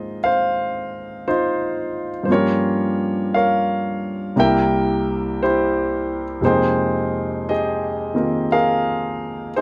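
A clear, up-front concert grand piano plays alone through this tender, late-night jazz ballad at a slow 58 BPM with a gentle swing in 4/4, its intimate tone carrying deep bass and audible action noise as it moves through Ab6, Gm7b5, C7 and Fm11 in a moderate club reverb, in a 9.6-second cut from a longer piece.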